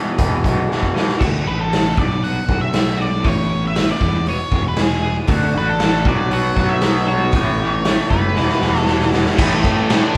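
Up front, a raw garage drum kit drives this angsty clip of quiet-loud alternative rock at 117 BPM in a straight 4/4. Its punchy kick and medium-tuned snare sound saturated and gritty in a stone room, and fills arrive near the start and again just before the final chord. A lo-fi, overdriven garage guitar riff sits up front beside the drums, breaking off after the opening and returning at 5.3 seconds with harmonic tremolo, while a growly, fuzzy picked bass plays underneath. In the background, a clean, compressed twelve-string electric guitar rings out twangy arpeggios with tremolo, and from 1.5 seconds a dark octave-fuzz lead guitar carries the melody. The chords cycle from E through D, Bm and Aadd9, and a very quiet cranked stack guitar riff enters over the closing A chord as the band plays together live in one room with light reverb.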